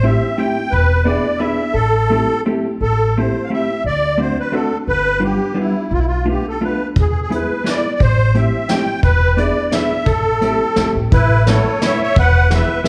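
A reedy musette accordion leads this excerpt of a whirling, bittersweet musette waltz in A minor, carrying the melody up front with a shimmering, wet-tuned voice over a dark, clean hollow-body electric guitar and a woody, growly upright bass. At 174 BPM in 3/4, the music moves with a light swing and a rubato give, while the picked, compressed guitar fills in the harmony and the plucked steel-string bass adds a thumpy low end. At 7.0 seconds a vintage brush drum kit joins on hi-hat, kick and a medium-tuned snare, its punchy kick sitting mid-forward in a studio room sound with a rolled-off top. The chords circle through minor sevenths and dominant turns around A minor before brightening to an Aadd9 at 11.1 seconds as a new section begins. A wet recital hall reverb places the players further back in the room, giving the dance a faintly distant air.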